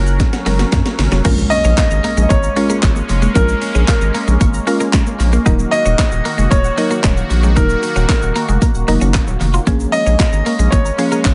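A saturated, thick sub bass sits up front in this energetic, driving dance-pop excerpt in Bb minor at 114 BPM, pumping against a punchy, layered house drum kit of kick, cracking snare, handclaps, hi-hat, shaker and crash, re-recorded in a large room and touched with analog delay. A drum fill runs from 0.2 to 1.2 seconds, and the harmony then moves from Gb to Bbm7, Ebm and back to Bbm7. A concert grand piano carries the melody with a natural tone and analog delay. Beneath it, a woody, mellow FM mallet pluck and an airy, detuned sawtooth pad with a filter swell share chorus and sidechain pumping. A very quiet, lush unison pluck spins arpeggios, and a bright, twangy twelve-string electric guitar plays a riff with analog chorus in the background. A grainy egg shaker enters at 1.2 seconds and a very quiet electronic impact at 1.3 seconds, and the echo-heavy mix has light reverb and a rounded top end.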